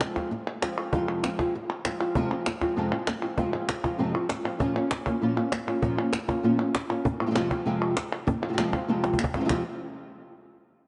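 A dark, fingerpicked flamenco guitar sits up front, colored by analog chorus and tape echo as it moves between F minor and B-flat minor in this dramatic, mournful fragment of a longer piece. A woody cajon with faint snares and soft hands, close and dry, plays alongside crisp, close palmas hand claps, and a drum fill arrives from 9.0 to 9.5 seconds. A lush hall reverb soaks the dreamy mix, whose top end is gently dulled.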